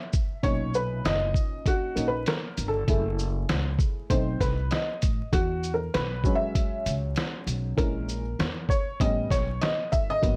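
Jazz-hop with a warm, cool mood at 98 BPM in B major, swung sixteenths driving a muffled, pitched-down sampler-style kit of thumpy kick, medium-tuned snare, hi-hat and shaker from 0.1 seconds, joined at 0.4 seconds by a dark, worn upright piano with audible action noise and slight detuning taking the solo up front over a woody pizzicato upright bass on gut strings, moving through Bmaj7, F#m7, B7b9, E69, A#m7b5 and A9 under light reverb and vinyl crackle in this cut from a longer piece.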